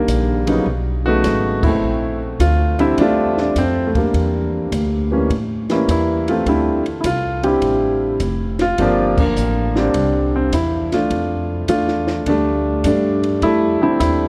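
A warm grand piano carries the melody up front over a woody, pizzicato upright bass from the very start of this relaxed, sophisticated swinging jazz piano trio excerpt, with a compact, dark and smooth cocktail drum kit of crash, hi-hat, ride, high-tuned snare and punchy kick sitting low in the mix. Lush extended chords pass through rootless and half-diminished colors before settling on a major sixth-ninth, and the whole band hits accents at 1.5 and 9.1 seconds. The dry drums contrast with a long cathedral-like reverb that places the trio in a church or concert hall, and the piece is cut from a longer performance.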